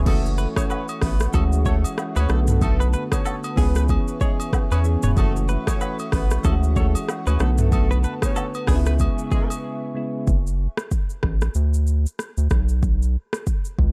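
A round, deep analog bass anchors this sultry, mellow afrobeats piece, joined by an overdriven, up-front afro-pop drum kit with a deep kick and metallic hats, soft electric-piano-like synth keys with chorus and tremolo, an airy, breathy pad in the background, a distant, dark horn section, close, dry agogo bells and woodblock, and a bright, twangy clean guitar riff with analog chorus and delay, until a break at 9.6 seconds gives way to bass and drums alone from 10.3 seconds.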